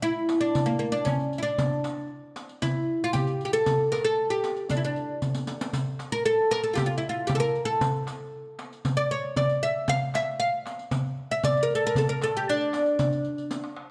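A plectrum-plucked, fretless oud opens this excerpt from a longer piece, its double strings sounding bright and woody as it carries the melody up front in D maqam nahawand, ranging from Bb3 to F5. A metal-shelled darbuka joins almost at once, crisp and played with soft hands, followed by a riq whose dark jingles have a vintage, band-limited character sitting lower in the mix. The mood is hypnotic and melancholic, moving at a straight 116 BPM in 4/4 throughout a single section. Drum fills mark the moments around 5.2 seconds and again near 13.5 seconds, just before the recording cuts off. A moderate recital hall reverb gives the acoustic ensemble a natural sense of space.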